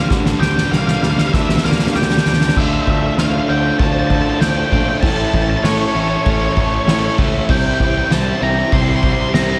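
Post-rock in D minor at 98 BPM, this cinematic, melancholic excerpt opens with a drum fill building up over Gm before settling onto Dm7, A and C, as an up-front soft-mallet drum kit with a fat snare and punchy kick drives beneath a dark, fuzzed octave lead guitar carrying the melody through distortion and digital delay, a round picked bass, two overdriven rhythm guitars playing riffs, a twangy, slightly broken-up guitar arpeggiating through delay, and a very quiet, smooth string section holding sustained chords with vibrato, all set in light reverb and studio ambience.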